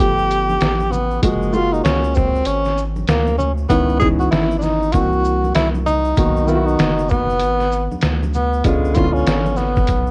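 This jazz-hop clip at 97 BPM has a cool, mellow feel, with a swung groove from a gritty, pitched-down sampler-style drum kit built on a thumpy kick, medium-tuned snare, hi-hat and shaker. Up front, a breathy tenor saxophone carries the melody with subtone, scooped notes and light vibrato, over a warm baby grand piano moving through lush chords like G9, F#maj9 and C#m9, and a round, deep analog bass with a nasal, dark edge. Bright tube shaker and congas sit distant in the background, and the whole clip is wrapped in light reverb and the worn, warbly pitch drift of old cassette tape.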